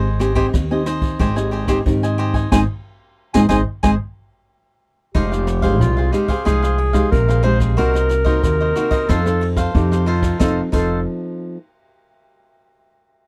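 Opening together on crisp picked cavaquinho, thumb-plucked classical nylon-string guitar and a woody, thumpy gut-string upright bass up front, with a brushed jazz kit of dark cymbals, high-tuned snare and boomy kick joining, this nostalgic, bittersweet samba-choro fragment at 91 BPM in a straight 4/4 brings in a vintage, classical-style clarinet as the second line at 2.5 s over a band accent, then moves from Ab major into F minor at 5.2 s, all in a dry, close 1970s-style studio sound.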